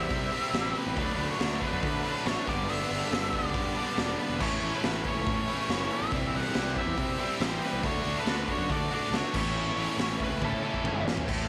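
A straight 4/4 groove from a raw garage drum kit sits up front, its punchy kick, medium-tuned snare, hi-hat, toms and crash sounding saturated and gritty in a pumping stone room, with a drum fill from 10.4 to 11.3 seconds in this confident, sunny classic rock fragment. Three bright, picked overdriven guitars play riffs in the background over C, D, G and A chords: a cranked stack, a plain overdriven electric and a very quiet, double-tracked biting one. A round, fuzzy fingered bass holds the low end, a dark octave-fuzz lead guitar carries the melody, and a tonewheel organ with a slow rotary speaker adds barely audible sustained chords, all under light studio reverb.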